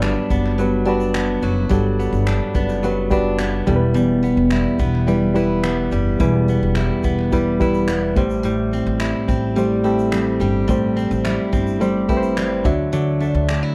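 Acoustic pop with a sunny, heartfelt mood, moving at 107 BPM in a straight 4/4 through Gmaj7, Em, Am7 and Dadd9 in this 13.7-second cut from a longer piece. A dark, full-bodied jumbo steel-string guitar and a reedy, worn electric piano, slightly out of tune and lightly overdriven through its built-in speakers, carry the accompaniment. Meanwhile a bright, compressed clean electric guitar recorded direct plays arpeggios, a woody pizzicato upright bass holds the low end, and a smooth acoustic drum kit with a punchy kick adds finger snaps and shaker, all in a dry, close 1970s-style small-room sound.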